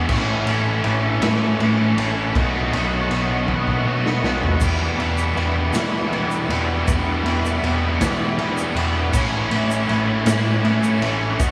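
A thick, up-front fuzz guitar drives this jangly, upbeat indie rock excerpt in a slow 6/8 at 53 BPM, backed by a compressed overdriven electric guitar with chorus, delay and slapback echo, a growling picked bass, a punchy raw garage drum kit with a fill at 3.5 seconds, and a grainy tube shaker entering at 4.6 seconds, all moving through A, B7 and Em in a big arena-style hall.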